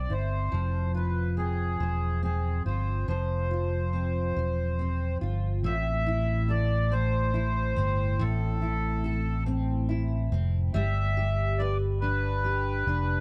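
From the first moment, a reedy, vintage-toned accordion carries the melody over a double-tracked, fingerpicked steel-string dreadnought guitar and a round, amped electric bass, all three sounding together from the start. This is a tender, romantic pop ballad in a slow six-eight lilt at 47 dotted-quarter beats per minute, cut from a longer piece. The accordion sits up front with a slow beating shimmer and a band-limited, old-fashioned character, while the full-bodied guitar fills out the harmony beneath it. The bass is fingered and dark, placed up front to anchor the low end. The harmony moves from C to F minor in the opening bars, shifts to A minor at 5.6 seconds as a new passage begins, and settles on G at 10.7 seconds, all wrapped in a dark, warm studio production.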